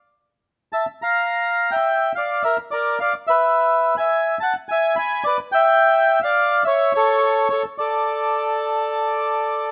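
Dramatic and melancholic, this short, rubato tango excerpt in D harmonic minor at 106 BPM features a solo bandoneon, reedy, dark and smooth, sitting up front in a room with light reverb from 0.7 seconds as the harmony moves from Fmaj7/E through Bb, E and A before settling on D5 at 8.1 seconds.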